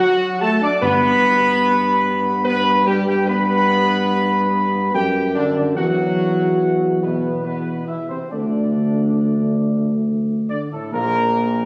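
Classical brass music, majestic and solemn, moving in a slow three with beats that breathe unevenly, cut from a longer piece. A dark, smooth-topped trumpet section carries the melody up front, over sustained chords from a clear, close-miked trombone section with light vibrato and a warm French horn section that shares that gentle vibrato. At 0.8 seconds a warm, roomy tuba enters on the bass, sounding distant yet placed up front, and timpani with soft mallets on calf heads add a round, dry stroke in the background until 2.0 seconds. The harmony rests on D, settles onto G, then shifts to Esus2 and an open D5 before the chords fall away at 10.9 seconds. The ensemble sits in a wet concert hall reverb, captured on a phone in the room, which lends the whole passage a spacious, ceremonial glow.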